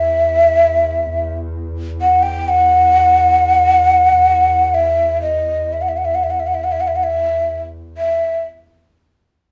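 A breathy, hollow ney sits close and up front from the first moment, tracing a hypnotic, melancholic Arabic maqam melody in free time with vibrato and tongued notes between D#5 and G5, while a single distant bowed double bass holds a low E2 drone colored by vibrato and portamento until 8.1 s, the two players captured live together in one room under a wet studio reverb, with the ney carrying on to 8.4 s in this fragment cut from a longer piece.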